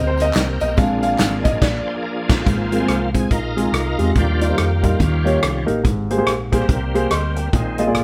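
A live band shares one lightly reverberant room in this jubilant, soulful uptempo gospel excerpt, which swings in four. An intimate baby grand piano, its action noise audible, takes a solo over rich jazz-tinged chords, joined briefly by very quiet tambourine and handclaps, before the band hits an accent at 1.6 seconds. At 2.5 seconds a shouting, bright tonewheel organ with slow rotary speaker and chorus vibrato takes over the solo, carried by a round, punchy hollow-body electric bass, a natural studio drum kit with punchy kick and hi-hat, and a distant, dark French horn section holding soft sustained chords.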